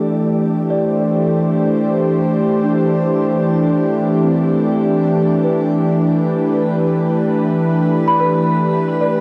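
A warm, detuned analog pad with a slow attack sits up front, holding smooth sustained chords through chorus and shimmer reverb, moving from Am7 to G at 4.9 seconds, while a delicate, bell-like celesta plays soft arpeggios in the background through tape echo, all of it bathed in a huge, wet reverb within a dark, warm production that gives this serene, spacious ambient fragment in free time its floating calm.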